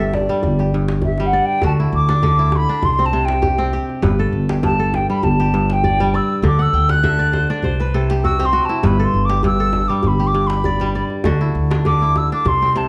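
A light reverb surrounds this joyful, flowing excerpt of West African string and xylophone music in G major at 100 BPM with a lightly swung feel, where a pure, hollow concert flute with vibrato carries a solo melody over bright, ringing fingerpicked kora arpeggios that add a fill from 6.6 to 8.8 seconds, a woody pizzicato upright bass up front, and a tight, cracking djembe set back in the background.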